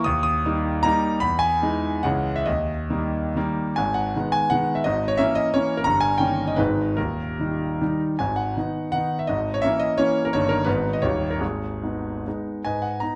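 A solo concert grand piano carries this short fragment from a longer romantic classical work, its tone smooth and vintage with deep bass and long sustain, placed up front by close, detailed microphones. It is a triple-time dance built on dotted rhythms, played with free rubato, and its mood is wistful and nostalgic. The piano spans from low in the bass to high in the treble, and a moderate recital hall reverb gives the notes a gentle halo. An opening phrase gives way at 3.8 seconds to a longer passage that circles through minor chords and a recurring half-diminished sonority set over a G# bass. Dominant-seventh harmonies repeatedly pull the music back home before the fragment ends at 13.2 seconds.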